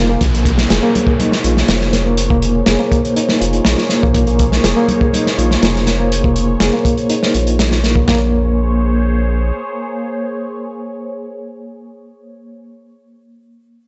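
A dry, gritty hardware recording with transformer saturation, light studio reverb and a dull top end carries this energetic, raw breakbeat excerpt at 122 BPM, built on a Bbm9 chord. A crunchy, up-front breakbeat kit of hi-hat, tight kick, snare and toms drives until 8.2 s alongside a deep, thick sub bass, while a reedy electric piano riff with tremolo, tape echo and a filter sweep sits over a swirling, airy pad pumping under sidechain with phaser and chorus. A background downlifter falls away early, and thin-skinned congas add brief bright hits at 1.0 and 4.9 seconds.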